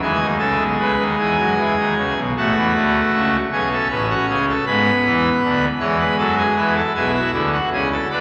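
A full pipe organ opens alone with brilliant mixtures and a majestic, romantic voicing, up front in a wet cathedral reverb, playing an elegant, joyful baroque-style three-part fugue in a straight 12/8 that moves into a new section at 2.4 seconds, in a brief passage cut from a longer piece.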